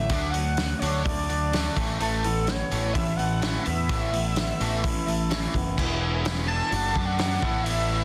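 Restless and moody, this short indie rock excerpt moves in a straight 4/4 groove and is cut from a longer piece. A shimmering, retro pulse-width lead carries the melody with a warbling vibrato and chorus, sitting above a bright overdriven guitar riff thickened by ensemble chorus and a clean, twangy guitar with a compressed, fingered tone. Underneath, an up-front fuzz bass growls with a punchy, amped edge, while a loose acoustic drum kit with dark cymbals, a fat snare and a rolled-off top plays from 0.1 to 7.8 seconds. The harmony moves from D to Asus2, then shifts at 5.8 seconds into a new section built on E, D/F# and Asus2. Light reverb and a dense, heavily limited modern master keep the whole sound tight and forward.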